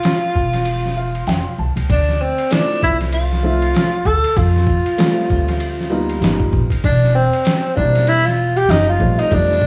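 A breathy alto saxophone with light vibrato and a whispered, intimate tone carries the melody over a gritty, pitched-down sampler-style drum kit of thumpy kick, hi-hat, ride and snare, both with a cassette-tape character, as a woody pizzicato upright bass joins at 0.4 seconds and a dark, boxy upright piano enters at 1.0 seconds with a fill during a break from 0.7 to 1.9 seconds, giving this smoky, mellow jazz-hop excerpt at 97 BPM, with a swung 16th-note feel and a small-room home-cassette sound, chords moving from F through Dm9, F6, G7alt and C9/E to F#.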